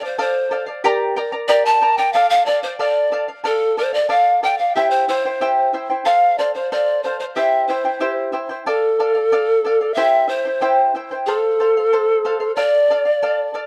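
An airy, woody pan flute with vibrato and a crisp chiff carries the melody up front through tape echo, while a bright, shimmering fingerpicked charango accompanies it in this festive yet melancholic Andean folk fragment, heard in a small room with a dark production.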